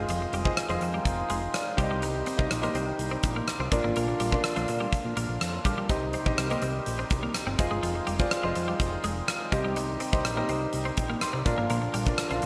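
A huge arena drum kit, punchy and up front in a pumping room with hi-hat, kick drum and rim click, drives this moody, dramatic slice of 1980s-style pop from 0.1 s onward. A clear concert grand piano with audible action noise and long sustain carries the accompaniment over a fat, saturated sawtooth bass. A twangy twelve-string electric guitar with subtle chorus and digital delay plays a riff, and a reedy, breathing harmonium holds chords in the background, all moving through Fm7, Cm and Bb in a straight 4/4 feel under moderate plate reverb and 1980s-style digital production.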